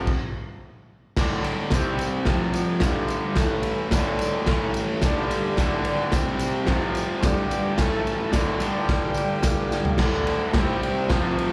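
This live club recording comes through the venue's PA with light reverb, small-room ambience and club reverb. It is a rowdy, swaggering garage rock cut at 109 BPM in a straight 4/4, taken from a longer piece. Up front, a bright, double-tracked electric guitar plays an overdriven, picked riff with spring reverb and slapback echo, moving through power chords on D, C, F, G and A after a brief opening stop. The acoustic drum kit sits equally forward with a punchy kick, a medium-tuned snare, toms, ride and crash, all saturated and gritty with a rolled-off top and a bright stone-room character. A jingly, band-limited tambourine rattles in the background. A reedy vintage combo organ with light vibrato slips in behind them on clean sustained chords at 5.6 seconds, adds a fill at 9.2 seconds, and is joined by a drum fill at 9.7 seconds before the riff comes round again.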